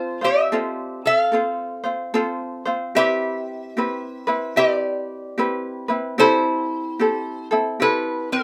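A lap resonator guitar carries the melody up front, its bright, metallic, nasal slide tone picked with fingerpicks over a span from C4 to F5. Beside it, a fingerpicked ukulele supplies a light, warm accompaniment, also close and present, keeping to a narrower range from C4 to C5. This brief Hawaiian excerpt has a relaxed, languid feel, with a lilting swing on the eighth notes in an easy 4/4. The harmony settles on F before moving at 3.0 seconds to Cmaj7, marking a shift into a second section, and then to Am7 at 6.2 seconds. Both instruments play throughout, set in a small room with a moderate touch of reverb and tuned slightly below standard pitch.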